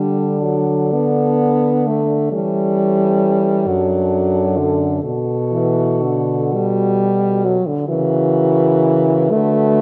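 Lyrical and warm, this brief excerpt from a longer classical work for horn quartet moves in a rubato 6/8 lilt over a progression from D5 to a closing Bm/D. A mellow, roomy melody horn and a second horn with light vibrato sit in the background, while the accompaniment horn, soft in attack and distant yet up front, is the most prominent voice, and the bass horn with its smooth top anchors the low end. Light reverb surrounds the quartet, and a worn cassette-tape quality adds warbly pitch drift to the recording.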